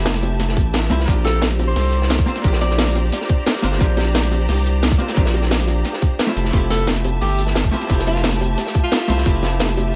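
Liquid drum and bass at 176 BPM in F major, dreamy and lush, where a thick, saturated sub bass and a tight, up-front electronic kick anchor a cracking garage kit, a gritty, rolled-off breakbeat kit and very quiet low-tuned bongos. A dark hollow-body jazz guitar with analog delay accompanies the Fmaj9 and Bb69 chords that a biting, distant string section, pumping against the sidechain, sustains beneath a clear, punchy alto saxophone melody with dub echo. The saxophone appears at 1.3 seconds and returns at 6.7 seconds, all set in an echo-heavy small room.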